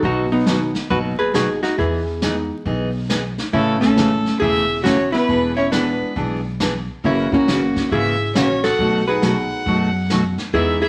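A dark, clean hollow-body jazz guitar carries the melody up front from the first beat, joined at once by a bright, full-bodied picked steel-string acoustic guitar, a woody, thumpy pizzicato upright bass and a vintage drum kit played with brushes. This is a playful, down-home slice of country western swing at 137 BPM in 4/4 with a swung eighth-note feel, cut from a longer piece in E major. The kit sounds natural and rolled-off on top, pairing a punchy kick with a medium-tuned snare and hi-hat. An upright piano with a woody, open tone and long sustain slips in at 0.5 seconds, sitting in the background. At 3.5 seconds a single bowed fiddle adds a second line, biting and nasal, with light vibrato and a distant, earthy quality. The harmony moves from B through Emaj7, Amaj7, E7 and F#7 to B7, and the whole recording sits in moderate studio reverb with a layer of vinyl crackle.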